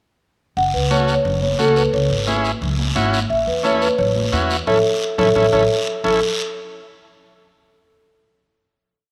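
A mellow, round marimba played with soft mallets sits up front in this short, sunny and danceable cumbia, carrying a woody, motif-based melody built in period phrases over a straight 4/4 pulse at 175 BPM in A major. From 0.6 seconds a pizzicato upright bass with steel strings plays a cumbia bass figure beneath it, while a raspy guiro scrapes a long-short-short pattern. Moments later, a vintage overdriven combo organ adds buzzy, rhythmic triad chords with heavy vibrato, and high-tuned congas ring out off-beat hand drum strokes from the background, sounding distant in a large room. The harmony moves from F#m to C#m and then to A. A drum fill and a band accent arrive together at 4.7 seconds, leading into a final chord at 6.0 seconds, with the whole piece bathed in a wet plate reverb.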